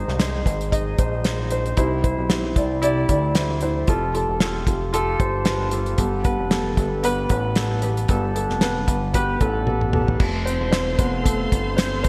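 A dark, mellow grand piano with audible action noise and a lush chorus opens this uplifting, hopeful piano-driven pop track alongside a fat, nasal analog bass with a detuned sawtooth filter pluck, soon joined by a dry 70s drum kit with a tight kick, a medium-tuned snare and gated reverb, which sits up front with the piano. A drum fill at 9.7 seconds leads into a piano solo at 10.2 seconds, where a warm studio string section adds bowed, vibrato-rich sustained chords. The bright 1980s-style digital production is set in a moderate hall reverb, with a gentle swing on the sixteenths.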